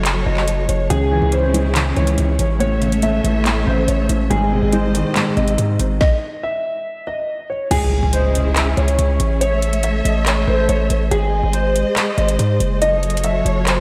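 A half-time trap groove at 141 BPM drives this brooding, hard-hitting hip hop piece in C# harmonic minor. A hard-clipped kick, woody snare, metallic hats, handclaps, rim clicks and crash sit under a saturated, up-front distorted 808 bass. A dark, intimate concert grand carries the melody through analog chorus and tape echo over lush, bowed symphonic strings, while a soft, felt-muted upright piano adds accompaniment before a stop at 6.0 seconds; a very quiet electronic impact marks the return at 7.7 seconds, after which a smooth, detuned gliding lead sits in the background of the dreamy, reverb-soaked hall mix.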